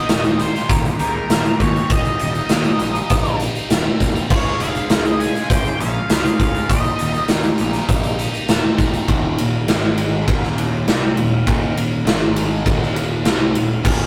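A swaggering, confident classic rock excerpt in straight 4/4 at 100 BPM, rooted in Eb mixolydian before settling into Eb major at 9.1 s. A cranked stack guitar, bright and double-tracked, carries the overdriven riff with a phaser coloring its tone, while a growly fuzz picked electric bass holds down the low end from Eb1 to Eb2. The big rock drum kit sits up front with a punchy kick, medium-tuned snare, hi-hat, ride and glittering crash cymbals in a natural big-room sound. An octave-fuzz lead guitar with a distorted, warm edge plays the melody between Bb4 and Ab5, dropping out at 7.3 s as the harmony moves from Eb through Db and back. The later stretch alternates Eb5 and Ab5 power chords with Eb, all captured as a rough rehearsal-room recording with tube saturation and a moderate booth ambience.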